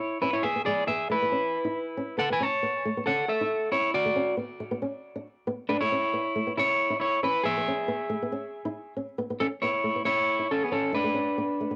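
A twangy, slightly broken-up electric guitar, fingered and up front with analog delay and cassette-tape grit, carries the melody through this joyful, sunny highlife fragment in A major at 137 BPM with a light sixteenth-note swing, while a thumb-plucked acoustic flamenco guitar, also tape-colored and marked by finger squeak, accompanies from 0.2 seconds in a homespun cassette recording with light reverb that moves into a new section at 9.4 seconds.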